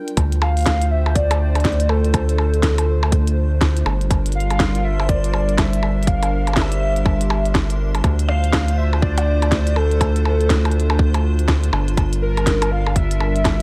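A swung 4/4 groove at 122 BPM drives this melancholic, eerie IDM excerpt in D minor, where a tight, overdriven electronic kick and a glitchy kit of tiny snare, clicky hats and percussion blips are joined by a rubbery, nasal square-wave bass that sits up front. A hollow, flute-like pad holds Dm7 and Gm7 chords beneath a warbling, nostalgic lead that enters at 0.4 seconds, colored by tremolo, lush chorus, cassette tape and digital delay. Far back, a reversed, granular texture adds dreamy shimmer, all within a dark digital ambience.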